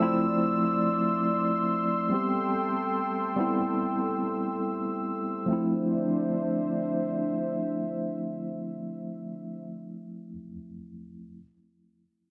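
Free-time trip hop in D dorian, melancholic and smoky, where a worn, slightly out-of-tune tine electric piano, up front with tremolo, gritty 12-bit sampler texture and tape echo, plays accompaniment over Dm9 and Am7 chords beside a deep, detuned sawtooth analog pad with chorus and a slow attack that holds sustained chords until 9.6 s, all set in a dark production with wet spring reverb, in a fragment cut from a longer piece.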